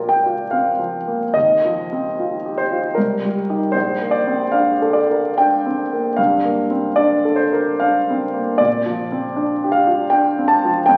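A warm concert grand piano carries this short, dreamy cut from a longer impressionist solo piano piece, sitting up front with an intimate, natural tone, deep bass and audible action noise. Set in Bb major and 3/4 time, it moves with a rubato feel at roughly 67-80 BPM, spanning Bb1 to A5 across its 11 seconds. The harmony glows with luminous extended chords, opening on Bbadd9 and drifting through Eb69, Cm7, Bbmaj9 and Gm11 before settling on Bb69 at 8.6 seconds. A wet recital hall reverb lends the sound space, while the grain of a very old 78 rpm record adds vinyl crackle beneath the playing. The result feels hazy and suspended, like a half-remembered reverie.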